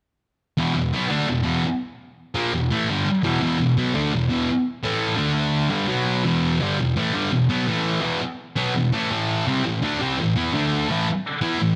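A moderate echo-chamber reverb surrounds this raw, rowdy rock passage at 169 BPM in a straight 4/4, where a lone thick, bright, double-tracked fuzz guitar sits up front from 0.6 to 11.7 seconds, picking distorted power chords that circle around E5, A5 and D5, with brief touches of G5 and B5.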